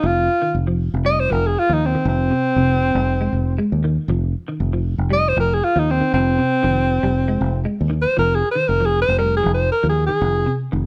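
Riding a swung 16th-note groove at 118 BPM in 4/4, this driving, funky afrobeat excerpt in F minor is cut from a longer piece and sits on a single F7 chord, tuned slightly flat at A4 = 438 Hz. A breathy alto saxophone takes the solo up front, its smooth top and light vibrato giving a pop-style polish, while a round, punchy fingered electric bass, foam-muted and amped, holds the low end close to the listener. Beneath them, a clean, picked electric guitar plays arpeggios softly in the background with an ensemble chorus, all set in a light reverb.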